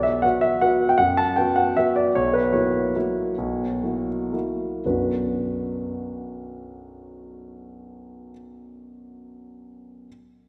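A solo concert grand piano opens this bittersweet, wistful classical waltz in B minor, its tone warm and up front with a deep bass, set in 3/4 with a rubato feel that ranges from 106 to 164 BPM. The harmony moves from B5 to F#7 over B, and the tempo slows from 1.6 to 4.9 seconds before a Bm chord begins a new passage. Recorded in a church or concert hall, the piano carries a wet 2.6-second church reverb, tuned slightly low to A4 = 435 Hz, in this brief cut from a longer piece.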